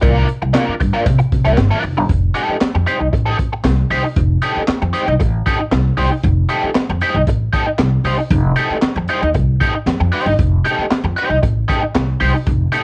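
Funk excerpt at 116 BPM in F mixolydian with a funky, playful mood, where an up-front, overdriven electric guitar with wah comps over a woody, thumpy pizzicato upright bass and a crunchy, gritty breakbeat kit of handclaps, hi-hat, punchy kick and high-tuned snare with cassette-tape saturation and a rolled-off top, the harmony moving from C9sus4 to F9 at 2.1 seconds in a lightly reverberant home cassette recording.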